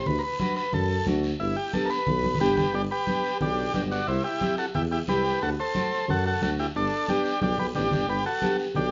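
A buzzy, overdriven combo organ with a light vibrato sits up front and carries the melody, taking a solo passage over the first 2.7 seconds of this festive, danceable cumbia cut from a longer piece. Beneath it, a mellow tuba with a smooth top and its own vibrato plays a punchy, pop-style bass line. Congas with a thick, damped skin sound close and dry, while a raspy guiro sits distant in a large room. A bright nylon-string guitar, fingerpicked in a classical manner, adds accompaniment from 0.4 seconds, as the harmony moves through D, G, C and D7 before settling back on G. The straight, four-beat feel and vintage tone give the band the sound of a group playing live together in one studio with moderate reverb and a soft, rounded high end.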